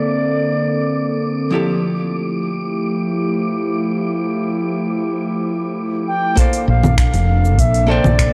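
The rhythm comes in at 6.4 seconds, when a deep, tape-warm electronic kick and a smooth R&B kit with metallic hi-hat, cabasa, congas and finger snaps settle into a straight 99 BPM groove in 4/4, joined at 6.7 seconds by a round, up-front woody fretless bass with subtle chorus. Before that, this relaxed, smooth sunset chillout fragment in Bb lydian floats on an airy, breathy pad with chorus and a filter sweep, moving from Bbmaj9 to Fmaj9 and back to Bbmaj9. A dark, clean archtop guitar picks an accompaniment through digital delay for the whole passage. A wind-like tuned noise texture hovers high and mellow in its own reverb until 6.4 seconds. A pure, wooden baroque flute with expressive vibrato and rolled-off highs sings a short phrase at the start and returns near the end, its line echoing in delay. The whole mix sits in a lush hall reverb with the worn, warbly pitch drift of old cassette tape.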